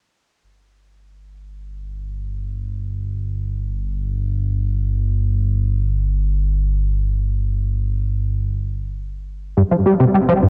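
Expansive and hypnotic, this short excerpt of ambient, sequencer-driven space music opens with a thick, nasal analog synth bass fading in at 0.4 seconds, its detuned sawtooth and square tones sustaining on a low G1 under a G5 chord. At 9.6 seconds a punchy, funky plucked analog bass riff arrives up front between G2 and G3, its fast-attack, decaying pulse-wave notes dressed in ensemble chorus and tape echo. The whole recording sits in light reverb with the worn, warbling pitch drift of old cassette tape.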